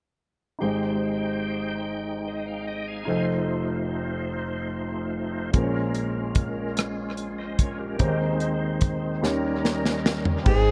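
Slow gospel in 6/8 at 49 BPM, counted in dotted quarters, this reverent, soulful passage in Ab major is cut from a longer piece. A grand piano with audible action noise and an intimate, natural tone plays accompaniment from 0.6 s, its part treated with dub echo, while a reedy, lightly overdriven tonewheel organ holds sustained chords through a fast rotary speaker and chorus vibrato. The harmony moves from Abmaj7 through F7 and Bbm7 to Ab/Eb, arriving on Eb7 at 9.2 s. A tight funk drum kit, dry and dark with a medium-tuned snare, enters at 5.5 s using crash, hi-hat, kick, rim click, snare and toms, also carrying dub echo, and plays a fill from 9.2 s. In the final moments a round, amped fingered electric bass and a bright, jazz-style alto saxophone with vibrato and scooped notes join on Ab. The mix is echo-heavy with light reverb, and every part sits up front.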